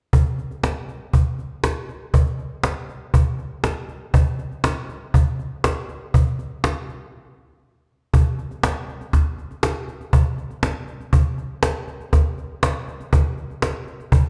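A lone cajon sits up front and close in a moderate recital hall reverb, its snappy, snare-buzzed tone played with soft hands and ringing into the resonant space of a church or concert hall. This country excerpt in 4/4 carries a heartbroken, lonesome mood on straight time, with the cajon playing from 0.1 to 14.2 seconds. A brief break arrives at 7.1 seconds before the second section begins at 8.1 seconds.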